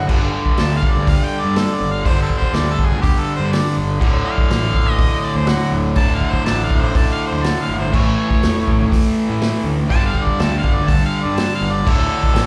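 This sounds like a live club gig heard through the venue's PA, with a small room's reverb around the band and a straight, swaggering drive in common time. It's a blues rock power trio with a southern rock streak, cut from a longer piece, and a harmonica solo runs the full 12.5 seconds. The harmonica is clear and smooth-topped, with light vibrato, scooped notes and a touch of overdrive plus slapback echo. Beneath it, a bright, double-tracked electric guitar sits up front with an overdriven riff carrying its own slapback, while a growling, overdriven picked bass, heard both direct and amped, digs in low. A vintage acoustic kit with dark cymbals, a punchy kick, a medium-tuned snare and a rolled-off top drives the crash, hi-hat, kick and snare through changes that move from G5 to D5 to A and back.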